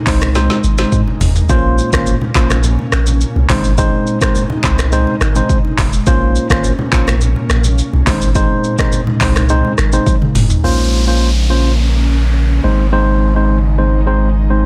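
Afrobeats in Bb minor at 105 BPM, this sultry, smooth passage cut from a longer piece moves in a straight 4/4 over chords shifting between Ab and Bbmadd9. An electronic afro-pop drum kit sits up front with a deep kick, woody snare and metallic hats, overdriven and roughened with vintage 12-bit sampler grit and soft clipping on the snare, while finger snaps, handclaps, rim clicks, shaker and toms fill out the groove, with drum fills at 0.4 and 10.1 seconds. Alongside it, a punchy sine sub bass with a pitch-drop attack holds the low end up front, and a worn, slightly out-of-tune tine electric piano, heard through a combo amp, carries the accompaniment. An ethereal, airy pad of detuned sawtooth and triangle tones drifts in the background with slow attack, long release, ensemble chorus and its own reverb, and low-tuned congas played with soft hands sound distant and very quiet, as if in a large room. 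At 10.6 seconds the drums and congas drop out and an electronic downlifter enters over the pad, piano and bass, all pressed into a dense, heavily limited modern master.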